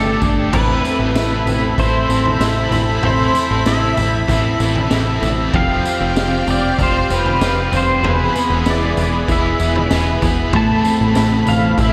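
A twangy pedal steel guitar carries the melody through this ethereal, hazy dream pop excerpt, its fingerpicked slide lines and volume swells wrapped in ensemble chorus and a diffuse ambient delay. Beneath it, a clean electric guitar picks arpeggios through analog chorus and the same drifting delay, while a bright, overdriven stack guitar adds tremolo-laced accompaniment under lush chorus. A thick, detuned unison pad holds airy sustained chords with a soft attack, and a punchy, plucky analog bass with a fast, decaying filter pluck gives the low end a funky snap. A raw garage drum kit enters at 0.2 seconds, sounding gritty and saturated in a small room, with a boomy kick, high-tuned snare, tambourine, toms and crash, its top end rolled off. The harmony moves from Gsus2 to Amadd9, then through Fsus2 and E before returning to Amadd9, and the whole mix is soaked in a long hall reverb that blurs the parts into a dreamy haze.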